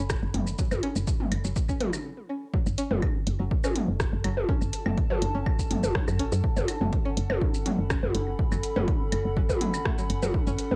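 Captured as a home recording on cassette with a digital ambience around it, this short cut from a longer minimal techno track feels cool and sparse. A woody, round FM bass sits up front with soft, mellow notes that strike fast and then decay, pumping against a dry, punchy electronic kick. A dry analog drum machine adds hi-hat, rim click and shaker, while electronic claves and toms, re-recorded in a small room, fill in the percussion. In the background a twangy, string-like resonator pluck plays a riff with a noise layer, a filter sweep and a moving notch, coloured by chorus, tape echo and cassette grit. Above it hangs a warbling, nostalgic tape-like pad with detuned waves, a slow attack and a long release, smeared by phaser and its own reverb. A brief break at 2.0 seconds gives way to the drop at 2.5 seconds, which carries the groove to the end.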